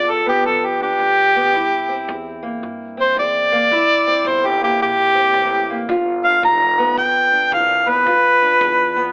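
A clear, close-miked harmonica takes a jazz-style solo up front, its vibrato and scooped notes bathed in plate reverb, in this gritty, rollicking acoustic country blues fragment with a swung feel. Beneath it, a dark, boxy parlour steel-string guitar with old strings is fingerpicked over G7 and C7 chords, while a pizzicato upright bass on gut strings thumps woodily in the background. A very quiet, distant kick played with brushes enters at 5.9 s, and the recording carries a telephone sound within a moderate studio reverb.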